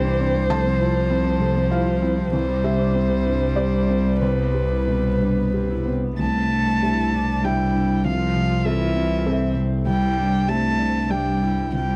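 From the first moment, a dark, woody solo violin sings the melody up front in this intimate, tender neoclassical piece in rubato triple time, bowed sul tasto with vibrato over a warm, floating cello second line, a distant viola in the background, a soft, mellow felt-muted upright piano with audible action noise, and a rich, soft-attacked double bass, captured in a dry, close 1970s-style studio sound with light reverb as a fragment cut from a longer work.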